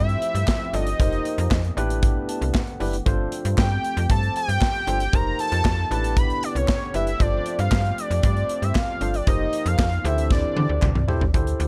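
A snappy, metallic slap-like FM bass drives this slick, late-night early-eighties boogie funk excerpt, joined up front by a tight, polished studio drum kit and a fat sawtooth lead with vibrato and a sub octave, while a bright, barky tine electric piano in lush chorus plays a fill from 2.0 to 3.1 seconds, a smooth, warbling analog pad sustains sus4 chords in the background beside a hollow group handclap, and a drum fill from 10.3 to 11.3 seconds closes the excerpt in a dark, dry production.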